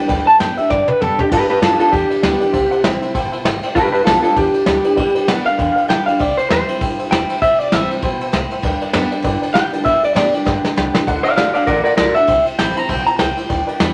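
A jangly, detuned honky-tonk piano and a bright, full-bodied steel-string acoustic guitar open this rollicking, retro rockabilly excerpt in G major at a swung 197 BPM, joined by a woody, thumpy upright bass in the background and a soft, dark brush kit with a tight kick that plays a fill just before 1.3 seconds. An electric guitar through a small old amp enters up front at 0.3 seconds, and from 1.3 seconds it takes a clean, slightly broken-up solo, its lo-fi, compressed tone carrying the melody over changes between G, C and D. The vintage piano adds a fill around 2.8 seconds and the drums another at 10.5 seconds, all set in a wet studio reverb.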